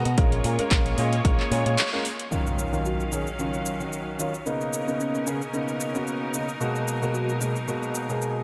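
A punchy, overdriven electronic kick enters up front in this sensual, groovy nu-disco fragment, beside a bright, envelope-filtered picked electric bass that stops at 1.8 seconds; a dark, mellow baby grand piano with delay and a lush, biting, distant string section pump under sidechain alongside that bass, while an overdriven pop kit adds handclaps, shaker and metallic hats on swung 16ths, a soft octave-layered synth lead with chorus, tremolo and tape echo hovers in the background, and an electronic impact sounds from 2.3 to 4.5 seconds.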